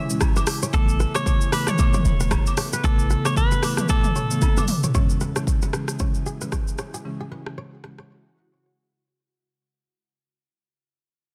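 This romantic, breezy afrobeats fragment, cut from a longer piece, moves at 114 BPM in 4/4 with a 16th-note swing, tuned slightly flat to A4 = 436 Hz, and circles from C#m to Aadd9 and back to C#m. An up-front electronic drum kit sets the pulse with a deep kick, clicky hats, rim click, shaker and toms, the snare softly clipped, and rolls into a fill just before the midpoint. A clean, boomy sine 808 bass with a fast attack drops in at 0.7 seconds. A buzzing marimba played with soft mallets adds woody, mellow accompaniment, while a crisp, ringing fingerpicked kora repeats a riff through a digital delay. A bright, twangy direct-recorded electric guitar carries the picked melody, also through delay, until 4.6 seconds, with vintage, band-limited woodblock and agogo bells tucked in the background. The second half fades out, and from 8.1 seconds a break leaves the ethereal, detuned sawtooth pad hanging in its chorus and reverb within a dense, heavily limited modern master.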